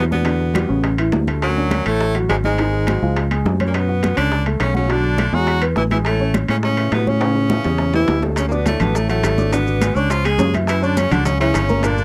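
Afro-Cuban jazz with a sophisticated, danceable mood, heard in a short cut from a longer piece with a dry, close 1970s-style studio sound and light reverb. An edgy, forceful tenor saxophone carries the melody with scooped notes in a jazz style, while a baritone saxophone with a soft-attack subtone plays a second line that sits distant and roomy in the background. A woody upright piano with short sustain provides the accompaniment, and a punchy fingered electric bass, direct and amped, stands up front. Behind them, high-tuned congas ring under hard hands, low-tuned bongos sound round under soft hands, and metal-shell timbales add a vintage, band-limited tone. A drum fill at 7.2 s leads into a new section at 8.4 s, where grainy, mellow maracas join, close and dry.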